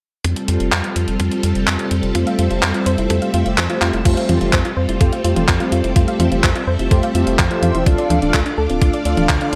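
Lush string-machine chords with a vintage ensemble chorus open this playful, romantic italo disco piece at 0.2 s, alongside a deep, round analog bass, a clean 12-bit drum machine and a thumpy electronic kick. The drum machine sits up front with crash cymbal, handclaps, hi-hat and toms bathed in gated reverb, while both drum parts carry a tape-softened, sampler-style character re-recorded in a large room. At 2.1 s a gentle, decaying pluck adds arpeggios with chorus and digital delay, and mellow, detuned synth brass joins with stabs colored by cassette tape and a filter sweep. A drum fill at 3.8 s leads into the second section, where the harmony later moves from Fadd9 to Dm. Light digital ambience frames this straight groove, which is cut from a longer piece.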